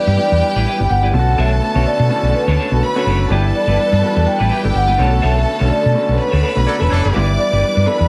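Set in a small room with light reverb, this driving, glamorous disco passage in B minor moves at 125 BPM with a lightly swung sixteenth feel, cut from a longer piece. A mellow, ringing vibraphone played with soft mallets carries the melody over a round, punchy fingered electric bass sitting up front. A focused chamber violin section adds a second line, a short-sustain grand piano and a clean, picked semi-hollow guitar with tremolo fill in the accompaniment, and a dark, woody string section holds sustained chords in the background. The band hits an accent from 5.2 s, and a distant, roomy horn section punches in with stabs at 6.7 s, all over chords that alternate between G6 and Bm9.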